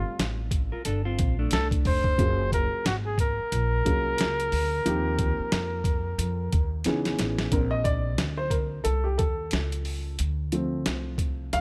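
Dry, this swung jazz-hop excerpt at 90 BPM in Bb major sets a cool, warm mood, with a breathy, vibrato-tinged flugelhorn carrying the melody up front until 6.8 s over a dark upright piano with audible action noise, woody pizzicato upright bass, a gritty, pitched-down boom bap drum kit with a thumpy kick, and a brief clean, fingered electric guitar line, followed by a drum fill at 6.9 s and an upright piano solo from 7.5 s.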